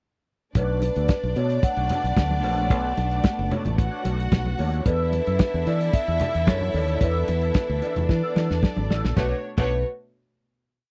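Driving and danceable, this short disco piece in B minor runs at 112 BPM, with a muffled, lo-fi soul drum kit laying down a four-on-the-floor beat with sixteenth-note hats up front, beside a fingered electric bass playing a syncopated line with chromatic approach notes. Over a background of choppy sixteenth-note guitar through a wah pedal and subtle chorus, soft-mallet vibraphone carries a ringing, metallic motif-based melody, while a lush violin section plays long high lines and a floating, sul tasto string section holds a sustained pad, with congas adding soft-handed slaps on two and open tones on four. The dry, close 1970s-style sound moves from Bm9 to E7sus4, and a drum fill from 8.1 seconds leads into a closing Bm9 chord at 9.2 seconds.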